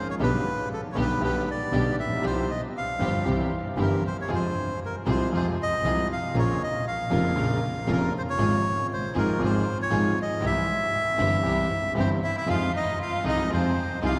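Tango in F minor at 117 BPM, rubato, passionate and sultry, with a reedy, up-front bandoneon carrying the melody over an intimate concert grand piano full of deep bass, long sustain and audible action noise, lush bowed string-section stabs with vibrato and portamento in the background, and a clear bowed double bass with light vibrato, joined at 12.0 s by a dark, close solo violin playing an expressive second line, the whole set in the long, wet reverb of a church or concert hall.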